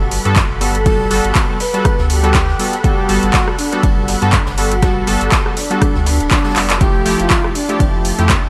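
A small-room ambience frames this relaxed, warm deep house excerpt at 121 BPM in 4/4, with a light swing on the sixteenths and a tuning set to A4 = 435 Hz. A punchy, overdriven electronic kick arrives at 0.4 s. It sits over a round sine sub bass that pumps with the sidechain, while an up-front electronic kit of handclaps, rim click and metallic hi-hats adds its own grit. Far beneath, a very quiet acoustic brush kit with a high-tuned snare, hi-hat and ride lends a faint jazz touch, and a drum fill lands at 6.6 s. Detuned sawtooth keys play chorused, pumping stabs with filter sweeps and delay, and a silky, vintage string machine holds soft chords as the harmony moves from Gmaj9 to Fmaj9 at 6.8 s. A mellow horn-like lead, wave-folded with vibrato and tape echo, sings a short melody through most of the clip. Near the close, at 7.2 s, a phased analog string pad enters high in the background.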